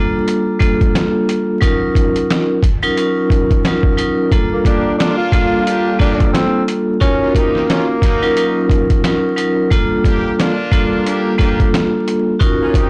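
A swung, sampler-style drum kit with a thumpy kick and a medium-tuned snare drives this reflective, gritty boom-bap hip-hop excerpt, entering at 0.3 seconds under a metallic, ringing vibraphone played with hard mallets and a slow motor vibrato that comps through alternating minor ninth chords. At 4.5 seconds a breathy, whispered tenor saxophone takes a smooth, intimate jazz solo with scooped notes until 9.0 seconds, while a distant, tight horn section adds stabs from 4.7 seconds, both touched with slapback echo. The whole recording sits in a small room and is blown out and overdriven, with vinyl crackle adding to its gritty character.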